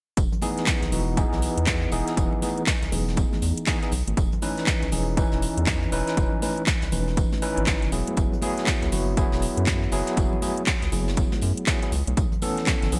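A bright, 1980s-style digital production with light small-room ambience frames this smooth, late-night deep house cut, taken from a longer piece, with a swung groove and jazzy chords moving from Emaj7 through C#m9/E and F#9sus4 to B9sus4. A punchy, overdriven electronic kick sits up front beside a house kit of handclaps and metallic hi-hats treated with gated reverb, while a soft brush kit of hi-hat, snare and tambourine and hard-handed acoustic congas sit in the background. A round, deep analog bass with tube saturation and sidechain pumping anchors the low end from 0.2 seconds, and a barky, gritty tine electric piano enters at 0.4 seconds, playing stabs up front through a combo amp with fast tremolo and digital delay.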